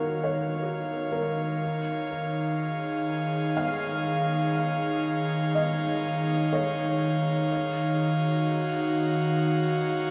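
Ambient music in Eb minor at 61 BPM in 3/4, melancholic and serene, resting on a single Ebm9 chord throughout this 10.1-second cut from a longer piece. An airy, breathy pad with chorus sits up front, sustaining bright chords with a slow attack and long release. Behind it, a felt-muted upright piano plays soft, mellow arpeggios through analog delay, all within an echo-heavy mix and a wet echo-chamber reverb.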